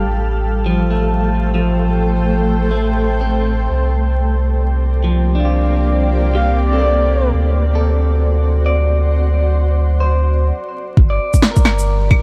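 Light reverb, digital ambience and vinyl crackle frame this wistful, rainy future garage excerpt in G minor at 132 BPM, swung on the sixteenths. A blurred granular cloud pad with vintage 12-bit grit and a round sine sub bass pump under sidechain, joined at 0.7 s by a compressed, slightly broken-up electric guitar trailing tape echo, while a breathy, flute-like synth lead with vibrato, subtle chorus and delay sings briefly from 6.3 s. After a short break the drums arrive at 11.0 s over a Gm7 chord: an overdriven soft kick up front, then a layered electronic shaker, cracking snare and claves under low-pass filtering.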